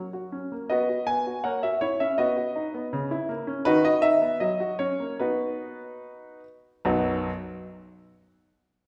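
Graceful and elegant, this short passage from a longer classical-period sonatina for solo piano moves in 2/4 time at roughly 72-83 BPM, with a rubato feel that lets the pulse breathe. A concert grand carries everything, its tone clear and natural yet slightly worn, with a deep bass that reaches down to B1 while the upper line rises as high as G#5. The harmony in B major circles between F# and B, passing through F#7/A#, A#dim/C# and B/D# before settling back on B at 5.2 seconds. The piano sits up front in the sound, framed by a wet recital hall reverb that gives it the resonance of a church or concert hall. The music turns toward a new section at 6.8 seconds, and the piano falls silent shortly after, at 7.3 seconds.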